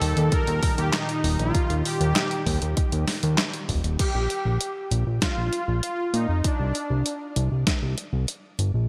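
Synthwave at 98 BPM in Bb major, this dreamy, romantic excerpt from a longer piece moves through chords of Eb, Bb5 and Csus2 in a straight 4/4. A soft, smooth supersaw carries the melody with a gentle attack, trailed by digital delay and shimmer reverb until 7.3 s. Behind it, a shimmering, retro pulse-width pad holds detuned, chorused chords in the background, pumping with sidechain until it drops out at 4.0 s. A fat, thick analog bass sits up front, its sawtooth, square and sine tones wave-folded and saturated through tube warmth with a fast attack. The clean 12-bit drum machine brings a medium-tuned snare, handclaps, hi-hat and crash with gated reverb, joined at 0.3 s by a punchy, layered electronic kick. A lush hall reverb and bright 1980s-style digital production frame the whole track.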